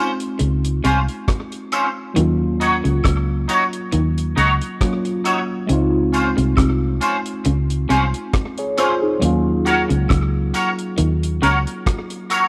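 A light studio reverb gives this short cut from a longer lovers rock reggae piece a close, intimate sound, and its romantic, sweet mood unfolds at a relaxed 68 BPM in 4/4 with a gentle swing on the sixteenths. A worn, slightly out-of-tune tine electric piano with a phaser carries the accompaniment through a combo amp, while a twangy, scooped electric guitar with ensemble chorus plays clean stabs up front over chords that alternate between Dbmaj7 and Ebm7. The deep reggae drum kit enters at 0.2 seconds with a dry, dark tone, a tight kick, rim clicks and hi-hat, all touched with slapback echo. At 0.4 seconds a round, punchy, foam-muted fingered bass sits up front beside a slightly broken-up, lo-fi picked guitar riff with subtle chorus that stays in the background. Tambourine and woodblock join at 0.8 seconds from the back of a live room, adding their own slapback echo to the easy groove.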